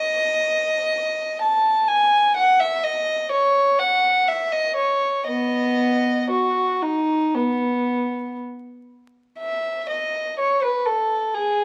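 A solo violin with a dark, nasal gut-string tone carries this brief classical excerpt, a baroque-style suite movement for unaccompanied violin cut from a longer piece. Played by one bowed player in period style, the violin sits up front with a reedy edge and a somewhat distant quality, ranging from B3 to A5 across the full 11.6 seconds. The tempo hovers between 57 and 64 BPM in 4/4, with a rubato feel that still keeps a dance-like lilt and a radiant mood. Close, detailed microphones capture the playing inside a recital hall with moderate reverb. A layer of vinyl crackle colors the sound.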